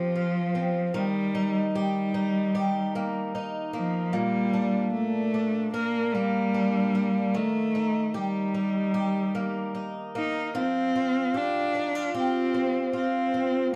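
A bowed cello and a picked twelve-string acoustic guitar open together in this carefree, sunny acoustic pop passage, cut from a longer piece. The cello carries the melody up front with a rich, smooth tone and vibrato, while the shimmering, octave-doubled guitar sounds boxy and up front as it moves through Fsus2, Eb and Bb chords. A moderate studio reverb gives the dark, warm production a sense of room.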